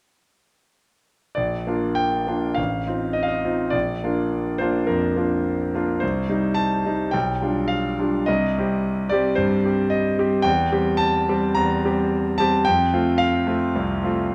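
Passionate and lyrical, this romantic classical character piece for solo piano is cut from a longer work, moving with a rubato feel in 4/4 at 98-114 BPM from Bb major toward F major at 10.5 s, its clear, up-front concert grand, smooth with a deep bass and a vintage tone, spanning A1 to Bb5 from 1.3 to 14.3 s inside the wet bloom of a large studio reverb.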